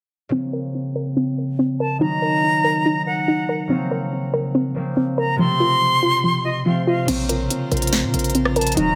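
A silvery, vibrato-laden concert flute carries the second line from 1.8 seconds in this eerie, melancholic half-time trap excerpt at 142 BPM in Bb harmonic minor, floating over a ringing, fingerpicked concert harp and a soft, round, chorused pluck arpeggio under a filter sweep, until at 7.1 seconds a breathy sustained pad, a punchy, heavy 808-style bass and an up-front trap kit with a sharp snare, crisp hi-hats, rim clicks and a crash cymbal join in.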